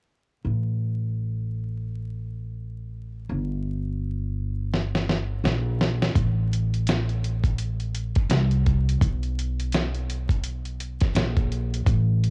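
A pizzicato upright bass opens this relaxed jazz-hop excerpt at 0.4 seconds, its steel strings giving a woody, growly tone that sits up front in the low register. The tempo is an easy 84 BPM in 4/4, with a 59% swing on the sixteenths and tuning pitched slightly high at A4 = 445 Hz. At 4.7 seconds a dusty, sampler-style soul drum kit arrives with a fill that runs to 6.2 seconds, then settles in with hi-hat, a thumpy kick and a fat snare. The drums are compressed and gritty, carry a cassette tape colour, and stand up front alongside the bass. The whole recording has the close, dry feel of a home cassette session with little reverb and a layer of vinyl crackle, giving the groove a warm, lived-in mood.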